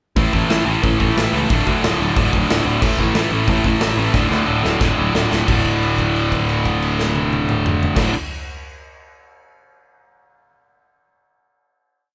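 A distorted, double-tracked electric guitar sits up front, driving eighth-note power chords through a short, energetic punk rock piece at 180 BPM in a straight 4/4, moving between A5 and D5. A bright, growly picked electric bass adds its own driving eighth notes beneath it, while a big acoustic rock kit with a punchy kick and medium-tuned snare pushes a fast punk groove, adding a fill from 4.2 to 5.5 seconds. The riff gives way at 5.5 seconds to a final held chord that rings until about 8 seconds, all captured like a band playing live in one room with light reverb.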